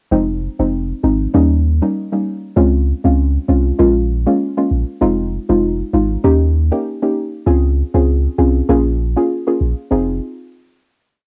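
From 0.1 s a soft, round pluck with chorus and a dark, detuned edge plays syncopated chords over a deep, punchy sub bass with a pitch-drop attack, setting a tough, sultry dancehall groove in F minor at 98 BPM with a light swing that cycles Fm7, Eb7, Dbmaj7 and Bbm7 twice before settling on a final Fm7 at 9.9 s, all in a lightly reverberant, cassette-recorded home sound.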